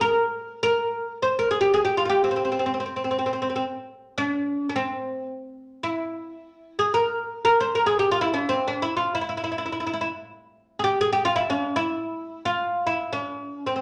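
Bathed in the lush reverb of a large studio, this passionate Persian excerpt in free time features a solo oud, its fretless, double-stringed voice woody, deep and up front under the plectrum as it plays one phrase and restates it from 5.4 seconds, staying between C4 and C5 throughout its 13.8 seconds.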